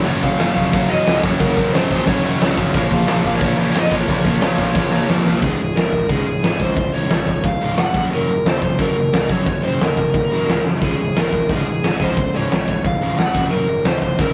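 A rowdy, energetic punk rock excerpt bursts in at 178 BPM in a straight 4/4, with three overdriven, picked rhythm guitars, a raw garage guitar, a bright distorted electric guitar and a very quiet, double-tracked cranked stack guitar, all hammering riffs over Gb and Bbm chords in Db major. A dark, bluesy lead guitar with distortion carries the melody on top almost from the start, while a round, punchy fuzz bass sits low in the background. The big rock drum kit sits up front in a large room, with a fat snare, a punchy kick, crash and hi-hat, its top end rolled off for a smooth, dark sound. A drum fill at 4.8 seconds leads into the second section at 5.4 seconds, where the stack guitar and the bright distorted guitar drop out and the raw garage guitar drives the Db5 and Gb chords with the lead, bass and drums. Another fill lands at 10.6 seconds, and the whole excerpt carries the rough feel of a rehearsal room with a light touch of reverb.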